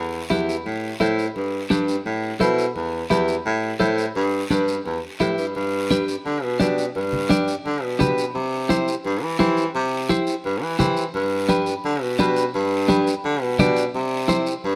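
Light reverb gives this fiery, passionate cumbia a gentle sheen, and the piece feels cut from a longer performance. A baritone saxophone carries the bass line from the very start. Its tone is warm, with vibrato and a distant, roomy character, yet it sits up front in a pop-style solo role. Beginning at 0.3 seconds, a clean, compressed electric guitar picks out the accompaniment in a higher register above it. Bright, damped congas struck with hard hands and a raspy, saturated guiro fill in the percussion, with the guiro tucked well back in the mix. The opening passage cycles through E minor, A minor and G, and from 5.6 seconds the harmony broadens into slower shifts between G and C.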